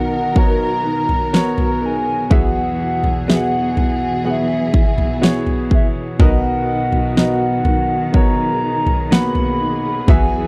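Pop ballad at 62 BPM in 4/4 and B major, heartfelt and emotional, heard in a short section cut from a longer piece. A hollow, woody synth lead with a clarinet-like tone carries the melody between E5 and B5, its soft attack and vibrato colored by chorus and a slapback echo. Beneath it, a clear concert grand piano with deep bass sits up front in the accompaniment, while a lush studio string section holds sustained, bowed chords and a small, very quiet nylon-string guitar adds fingerpicked arpeggios. A punchy, produced pop drum kit enters at 0.4 seconds with a fat snare, kick and toms placed prominently in the mix. The harmony moves from Bmaj7 to Eadd9 and back to Bmaj7, all captured in a dry, close 1970s-style studio sound with light reverb.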